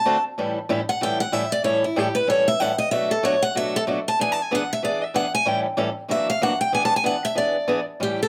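A bright steel-string acoustic guitar with fresh strings picks a playful, charming swing jazz melody at 189 BPM in A mixolydian from the first moment, soloing up front through 8.0 seconds over a dark, boxy swing-style acoustic guitar that picks up-front accompaniment through changes from A7 to Bm7, E7 and F#aug7, all set in a moderate club reverb in this short cut from a longer piece.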